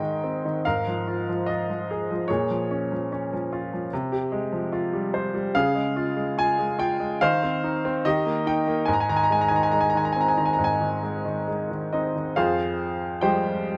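Peaceful and warm, this short excerpt of lyrical classical solo piano moves in a gentle rubato at roughly 65-76 BPM in 4/4, settling in Ab major. A bright baby grand plays alone from F2 to Bb5, its brilliant tone and long sustain placed up front by close, detailed microphones in a light reverb. The harmony drifts through Bbm7, Db and Eb back to Ab, then turns to Fmadd9 at 12.4 seconds as a new section begins just before the cut.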